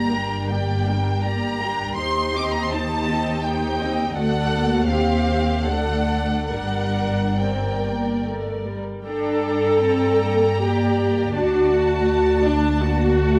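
This classical slow movement for string orchestra, a fragment cut from a longer piece, moves in a rubato triple metre with a solemn, elegiac mood. The first violins carry the melody high in their range with a soft attack and a smooth top, while the second violins sing a darker, woody second line beneath them. The violas supply a rich, even accompaniment that sits up front and is the most prominent voice in the balance. The cellos lend a dark, expressive bass shaded with portamento, and the double basses add a deep, woody foundation. Every section plays with vibrato throughout the 13.4 seconds, the opening phrase returning at 9.1 seconds over a sombre minor-key progression, all set in a moderate recital hall reverb.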